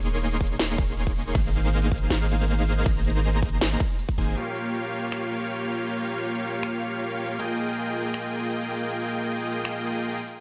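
A huge, detuned supersaw carries the riff from the opening until 10.2 seconds, its thick sawtooth unison layered with a sub octave, compressed and set up front with sidechain pumping, a low-pass filter and digital delay. This dreamy, bittersweet future bass piece, cut from a longer track, moves at 159 BPM in a half-time feel in F minor, tuned to A4 = 438 Hz. The opening drop pairs the riff with a deep, mellow sine-toned 808-style bass that also pumps with the sidechain, and a punchy, layered electronic kick that drops out at 4.2 seconds, just before the bass stops. A trap kit of finger snaps, crisp hi-hats, ride cymbal and a sharp snare, with a tape-warm edge, runs throughout. The harmony moves from Eb7sus4 and Ab69 to Gm7b5 at 4.4 seconds and then Fm11, all framed in light reverb and digital ambience.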